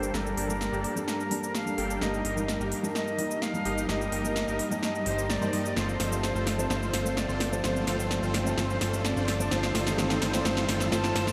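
Festival progressive house at 128 BPM in 4/4, this powerful, euphoric build-up excerpt has a distant, pure flute with vibrato and tape echo carrying the melody over a vintage grand piano treated with subtle chorus and tape echo, a warbling, detuned unison pad with slow attack and chorus, and a huge, bright supersaw riff given a cassette-tape tint, low-pass filter and tape echo. A thick, mellow analog bass with a moving notch anchors the low end, while an up-front, punchy big-room kit with crisp hats, shaker and snare plays a drum fill throughout, and filter sweeps run on both the supersaw and the pad. A very quiet electronic riser enters at 2.8 s, and the chords move from Gmadd9 through Eb/G and F/G to Cm/G in a dreamy mix soaked in a huge ambient reverb.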